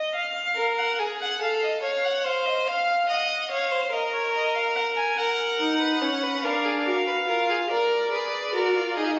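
In a straight 6/8 at 48 dotted-quarter beats per minute, this solemn, serious excerpt of a baroque-style string quartet fugue opens with a single violin carrying the melody in a warm, smooth, even tone with vibrato, joined at 0.6 seconds by a second violin playing a rich, focused second line. At 5.6 seconds a viola enters with a rich, focused, vibrato-laden accompaniment, all three bowed parts sitting up front. The recording was captured on a phone in a recital hall, and its wet reverb, compression and dull, rolled-off top give it a hazy, roomy character.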